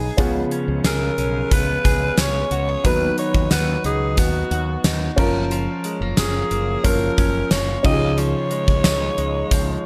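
Romantic and nostalgic, this 1980s-style pop fragment in Db mixolydian moves at a straight 90 BPM, with a raspy, gritty alto saxophone carrying an up-front vibrato melody full of scooped notes from 0.9 seconds over a natural baby grand piano, a clean, picked electric guitar riff bathed in lush chorus and digital delay, a round, punchy fretless bass, a barely audible jingly tambourine, and a polished gated drum kit with a fat snare, bright cymbals and an airy stone-room sound, all set in light reverb and studio ambience as the chords pass from Db7 through Cb and Gbmaj7 to Dbadd9.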